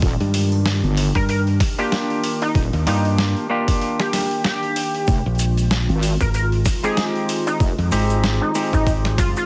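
Heavily compressed like a radio broadcast, this short glitch hop excerpt sits in F dorian at 95 BPM with a swung sixteenth-note feel, and its mood is playful and funky. A warbling, nostalgic pad drifts in the background with lo-fi 12-bit grit, chorus and sidechain pumping, holding sustained chords that move from Ebmaj7 to Fm7 at 5.1 seconds. Up front, a heavy, detuned wobble bass with chorus runs alongside a direct, warm fingered electric bass. The sampler-style drums sound pitched down and overdriven in a small room, with a thumpy electronic kick under a gritty boom bap kit of hi-hat and medium-tuned snare. From 1.2 seconds, an edgy, tearing sync lead with vibrato, lush chorus and dub echo carries the melody, and at 1.8 seconds a twangy clean electric guitar joins with pumping stabs. A grainy egg shaker joins quietly in the background at 5.1 seconds.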